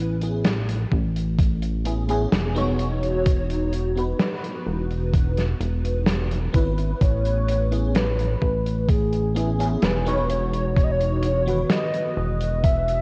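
Through a cassette-tape haze with light studio reverb, this faded, woozy vaporwave excerpt drifts at 64 BPM in E major, a lush, dreamy FM electric piano with a soft pad layer shimmering through phaser, ensemble chorus and tape echo over a glossy, mellow chorused synth bass, the chords moving between Amaj9 and Emaj7sus2. A big rock kit with a dark, smooth snare and hi-hat, treated with gated reverb, sits up front beside a thumpy, overdriven electronic kick that enters at 0.9 seconds. At 7.0 seconds a velvety, detuned synth lead with vibrato, chorus and tape echo carries the melody to the end.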